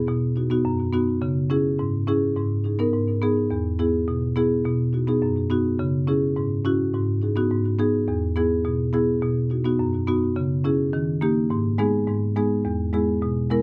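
A solo marimba played with medium mallets carries this short dancehall cut, its rosewood bars sounding woody and up front from 0.1 s to the close at 13.6 s. The mood is sultry and tough, set in a straight four-beat groove. A tape echo trails the marimba, and light reverb surrounds it within a dark production. The harmony cycles through B, C#m, G#m and E, with a D# chord near the end of that run. At 11.5 s the piece moves into a new section that settles on G#m and then E before it is cut off.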